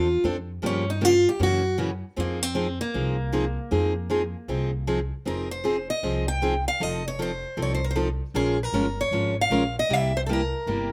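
A boxy, bright parlour steel-string guitar picks out the virtuosic, bittersweet melody of this swinging jazz manouche excerpt, backed by a second concert-sized steel-string guitar with fresh strings and audible finger squeak and by a woody, dark pizzicato upright bass, all three up front in a dry outdoor recording.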